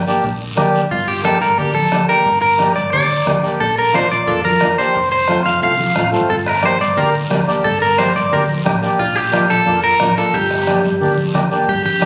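A dark, round hollow-body electric bass opens this driving, passionate cumbia at 178 BPM in G minor, and a reedy, airy accordion quickly joins with a full, mellow tone. Raspy guiro and a distant bombo with a soft beater sit in the background, while thick-skinned congas played with hard hands enter at 0.6 seconds. At 0.9 seconds an up-front electric guitar takes the melody, its twangy, slightly broken-up tone carrying spring reverb and slapback echo. The harmony moves through G minor, B-flat and F before settling back on G minor. Captured on a phone in a club room, this fragment of a longer piece has a live, roomy feel.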